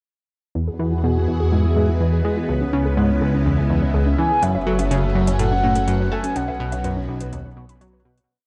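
Opening at 0.6 seconds with a punchy, funky analog bass riff cycling an 8-step sequence over a fat, detuned sawtooth root bass and a lo-fi, cassette-warbled pluck arpeggio looping three steps against the bar, this luminous, cosmic piece of sequencer-driven ambient space music in E major at 124 BPM soon adds a swirling, phased string machine, a resonant bubbling stepped-filter texture holding a high note in the background, and a round, horn-like synth lead singing arching motifs with vibrato and lush chorus, while dry, metallic electronic hi-hat and low woodblock with overdrive join at 4.4 seconds as the dark, plate-reverbed production fades out from 5.7 seconds.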